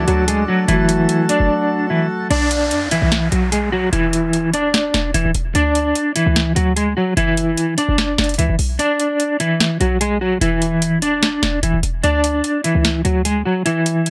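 Eerie and hard-hitting, this half-time trap cut is taken from a longer piece and led by an electric guitar at the edge of break-up, its dark, fingered melody treated with tremolo and held up front throughout. For the opening 2.3 seconds a mellow, clean tine electric piano and a reedy, nasal hand-pumped harmonium with a breathing, close-miked quality add chords beneath the guitar before both drop out. A booming analog drum machine with a crisp snare and metallic hi-hats sits up front with a tape-warm edge, and it briefly breaks near 1.5 seconds, while a short 808-style bass with a punchy sine tone, a noise layer and a fast attack carries the low end. As the second section begins, a background downlifter sweeps through, and the harmony moves between B minor, D suspended and D, with an F-sharp power chord along the way. The kick drops out for short moments later in the passage, and the whole mix sits in a light reverb.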